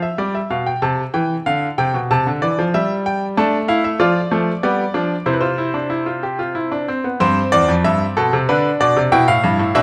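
Classical, baroque-style three-part fugue for solo grand piano, elegant and lively, moving at 94 BPM in 3/4 with a straight feel and settling into C major from 3.4 seconds. The bright piano sits up front with a brilliant, intimate tone, long sustain and audible action noise, spanning E2 to A5 as the harmony moves from Em through Dm and G7 to C before a new section at 7.2 seconds touches Bm and returns to G7. Close, detailed microphones capture the instrument within a moderate recital hall reverb, and the passage is cut from a longer piece.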